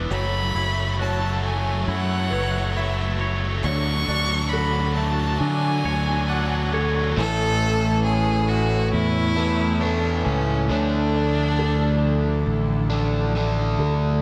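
Hopeful and soaring, this dreamy rock passage is cut from a longer piece and moves at an unhurried straight pulse, drenched in a lush hall reverb. A very quiet, rich chamber string section holds sustained chords throughout, while a felt-muted upright piano, dark and intimate with audible action noise, plays arpeggios in the background through lush chorus and tape echo. A growling fingered bass, overdriven and up front, anchors the whole 14.2 seconds. The opening build-up pairs a twangy, clean guitar's echoing arpeggios with a scooped, distorted guitar riff, and both stop at 7.2 seconds, when a bright overdriven guitar takes over with an up-front riff carrying a subtle chorus. Above it all, a clear, focused violin sings the melody with vibrato from a distant place in the mix, trailing tape echo until 12.4 seconds, as the harmony shifts from F#m7 and Dmaj7 to Aadd9 and Dmadd9.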